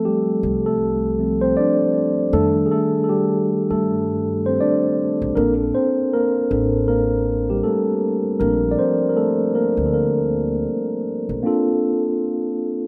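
This lo-fi hip hop excerpt moves at an unhurried 79 BPM in 4/4, with a 16th-note swing and a nostalgic, cosy mood in B-flat major. A mellow tine electric piano sits up front, clean and warm, softened by cassette tape colouring and heard through built-in speakers, taking a solo across the opening stretch. An upright bass enters at 0.4 seconds, its pizzicato notes dark, woody and thumpy from steel strings, and it drops out at 11.4 seconds. From there the electric piano carries on by itself into a brief new section that closes at 12.9 seconds. The harmony drifts from Dm7 to a rootless F13 and settles on Bbmaj9, all wrapped in a lush hall reverb that lends the rough home-demo mix a roomy glow.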